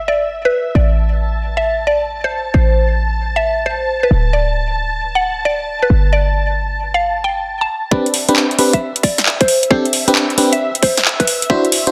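Skippy and moody, this cut from a longer UK garage track rides a swung two-step groove at 134 BPM in A minor. A silky string machine holds soft, warbling chords throughout, its ensemble chorus breathing with sidechain pumping, while a round, woody mallet-like pluck carries the melody through tape-worn chorus and digital delay. Underneath, a punchy, sine-toned 808-style bass hits short and tight until 7.7 seconds. At 7.9 seconds the piece moves into a build-up, where a tight electronic kick pushes up front, joined moments later by a garage kit with a woody snare, metallic hats and handclaps. A glassy FM electric piano joins at 7.9 seconds too, playing bell-like stabs roughened by 12-bit sampler grit, filtering and delay, over chords that shift from a rootless Am11 to D9. A moderate plate reverb lends digital ambience, and the dense, heavily limited master keeps the sound modern and forward.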